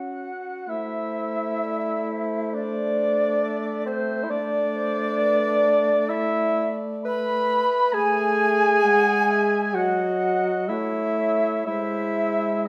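Solemn and elegiac, this slow romantic movement for wind quintet moves at 66 BPM in 4/4 with uneven, rubato beats, set in A minor and cut from a longer piece. A hollow concert flute carries the melody, tongued with vibrato, while a warm oboe with its own vibrato shapes a second line in the same register, sounding somewhat distant. A clear, close-miked French horn with light vibrato and a mellow clarinet set in the background supply the accompaniment. A bassoon, smooth on top and up front, holds the bass. The chords pass from Am at 0.7 seconds through E5/A and F#m before arriving on G# at 11.7 seconds, all within a recital hall reverb that lends a wet, roomy glow.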